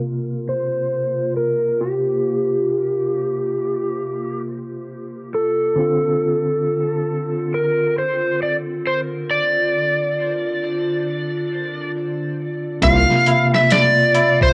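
An overdriven slide guitar carries the melody up front in this dark, cinematic trip hop excerpt at 68 BPM, riding over a bell-like tine electric piano with tremolo and tape echo and a warbling, nostalgic pad on C7sus4 and Dm7 beneath a filter sweep, until at 12.8 seconds a gritty, pitched-down boom bap kit, a high-tuned tabla in the background and a brief deep, rumbling detuned saw bass arrive, all wrapped in lo-fi cassette haze.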